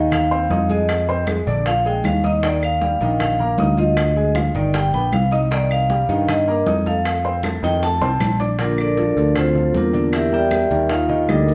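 Recorded live in one large studio with a moderate reverb, this lively, sunny Afro-Cuban jazz excerpt in Bb major moves at a straight 156 BPM in 4/4. A dark, ringing vibraphone played with medium hard mallets and motor off carries the melody up front beside a growly, amped picked electric bass, while a natural-sounding baby grand piano with short sustain comps underneath. Tight, saturated bongos, bright thin-skinned congas, woody claves and grainy maracas fill out the percussion, with a drum fill from 7.4 s leading into a vibraphone solo at 8.6 s.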